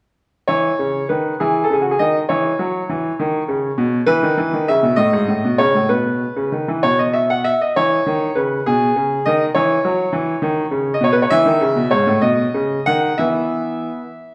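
A solo concert grand piano opens at 0.5 seconds on a C#m9 chord, setting a cheerful, playful tone for this classical-period sonatina fragment in E major, cut from a longer piece. The music moves in a lilting 6/8 at roughly 61-69 dotted-quarter beats per minute, with a rubato feel that lets the phrases breathe. The piano sounds brilliant and up front, with deep bass reaching down to G#2 and a long sustain, while the melody rises as high as F#5. The harmony moves between tonic and dominant colours, passing through F#5/E, B and G#madd11, pausing on a bare moment near 6.8 seconds before returning home on E and closing on E5 by 14.3 seconds. A wet recital-hall reverb with a 1.6-second decay surrounds the instrument, and the tuning sits slightly low, at A4 = 435 Hz.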